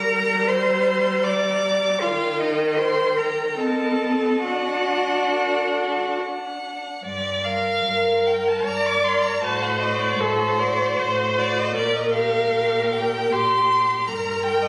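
Captured on a phone in a recital hall, this recording has a resonant, roomy sound with a moderate reverb of 1.7 s, and it is cut from a longer piece. It is a slow romantic movement for string quartet in G minor and 3/4, moving with a rubato feel between 68 and 81 BPM, tuned to A4 = 435 Hz, and its mood is yearning and solemn. The first violin carries the melody with a focused, vibrato-laden tone and a smooth top, while the second violin bows a supporting line alongside it. The viola sits up front in the accompaniment, shaping it with expressive portamento, and the cello grounds the bass with a rich, even sound. All four players bow throughout the 14.7 seconds, moving into a second section at 7.0 seconds, with harmony that touches a diminished chord before settling back on G minor.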